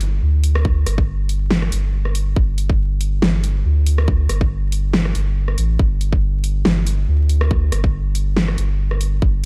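A soft dub sub bass anchors this brooding, heavy deep dubstep piece, its round, triangle- and square-wave tone sitting up front with a fast attack and sustained notes from the opening moment to 9.5 seconds. The half-time feel carries a light swing on the sixteenths, giving the groove a loose, lurching weight. The dubstep kit, present from the start, brings bright hi-hats, rim clicks and a huge snare, all pushed through overdrive for a crunchy, forward edge. A tight electronic kick drum joins at 0.6 seconds, layered and placed up front, as if re-recorded in a small room. The sound is dry and gritty, with a hardware character and a dusting of vinyl crackle, and this short cut from a longer piece stays within a single section throughout.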